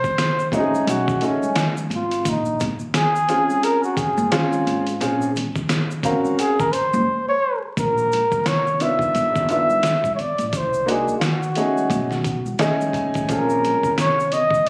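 A phone recording made in the room carries club reverb, studio ambience and a layer of vinyl crackle over this nocturnal, cool jazz-hop excerpt in Bb minor at 87 BPM, with a 16th-note swing. A breathy, mellow flugelhorn sits up front and close-miked, playing a jazz-style solo with light vibrato from the start until 7.8 seconds, just after a short break that opens at 7.1 seconds. Beneath it, a gritty, compressed, pitched-down sampler-style drum kit pushes a thumpy kick, medium-tuned snare and hi-hat, its sound re-recorded in a large room. A smooth, vintage baby grand piano accompanies through chords such as Bbm9, B13 and G7b13, adding a fill from 12.3 seconds. A woody, dark upright bass with gut strings is plucked underneath, while a tube shaker and congas ring quietly in the background, close and dry.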